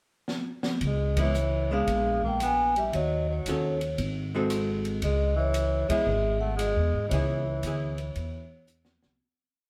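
Swung eighths and a two-feel pizzicato upright bass, woody and thumpy up front, carry this smoky, moody small-group jazz piece through a stone room, where an open drum kit with a high-tuned snare, boomy kick and stick ride pattern kicks off with a fill at 0.3 seconds, a motor-off vibraphone rings out a motif-based melody of call phrases, a breathy, whispered tenor saxophone with vibrato shadows it in a harmony line mostly in sixths, and a dark, clean hollow-body archtop guitar adds syncopated three- and four-note comping before the band fades out from 7.1 seconds.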